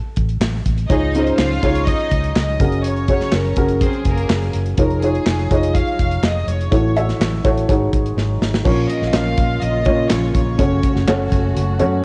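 Uplifting and warm, this short piano-driven pop passage rides on a dark, woody upright piano with audible action noise, a round foam-muted electric bass and a punchy, polished drum kit with handclaps and crash, while a reedy, gut-toned chamber violin section carries the melody over a focused, distant second violin line until 4.5 s; a lush string section slips in behind at 8.6 s, near the end of a drum fill, as the harmony darkens toward minor chords, all heard through a cassette haze in a small, lightly reverberant room.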